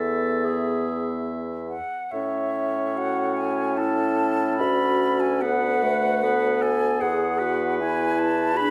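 A wet recital-hall reverb surrounds this brief, tender passage cut from a slow romantic movement for wind quintet, set in A major at 74 BPM in a rubato 3/4. An airy concert flute sings the lyrical melody up front, its vibrato and soft attack giving the line a gentle glow. Beneath it, a distant oboe traces a soft-edged second line, while a roomy, mellow clarinet and a French horn with a smooth top fill in the accompaniment. A warm bassoon anchors the bass with light vibrato, and the chords move from E to A at 2.1 seconds, where a new passage begins, then through Bm/D before settling back on E at 7.0 seconds. The whole reads as intimate chamber writing in a classical style, each voice heard clearly within the hall's resonance.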